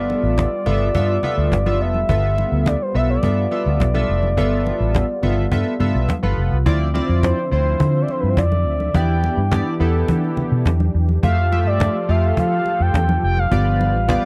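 A smooth, full-bodied sawtooth lead with vibrato and gliding portamento carries the melody from the first moment over a glossy chorused polysynth, a soft-attack detuned pad in the background and a dark, round, foam-muted fingered bass sitting up front, giving this slick early-eighties boogie funk fragment its funky character. A woody cajon played with soft hands and faint snares joins at 0.1 seconds alongside bright, thin-skinned congas tucked further back. The dry, close studio sound keeps every part intimate as the harmony moves from G13 into a new section at 6.7 seconds, passing through Dm9, Em7 and Fmaj9 before landing on G7.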